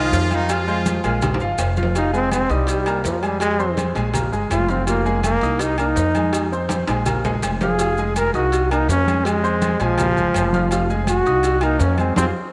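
Festive, sunny salsa cut from a longer piece, where a brilliant horn section opens with a brief octave-doubled line before a punchy, vibrato-laden trombone takes an up-front solo from 2.0 seconds over clear grand piano with audible action noise, a woody pizzicato upright bass, thick-skinned congas, a tight distant cowbell, ringing saturated timbales and agogo bells, and grainy maracas, with drum fills and a closing band accent at 12.2 seconds, all bathed in a moderate plate reverb.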